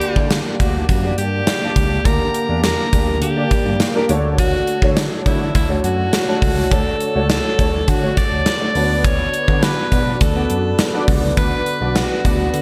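A straight 4/4 pulse at 103 BPM from an up-front gated 80s drum kit, with tight kick, medium-tuned snare and hi-hat in a bright stone room, drives this uplifting, glossy 1980s-style pop passage in D major. An edgy, present alto saxophone carries the solo melody with scooped notes and delay, over a warm concert grand piano accompaniment with deep bass and ensemble chorus, while a bell-like, clean tine electric piano plays the bass line from 0.2 s through Gm, Dmaj7 and Bm, all in a dreamy mix soaked in plate reverb.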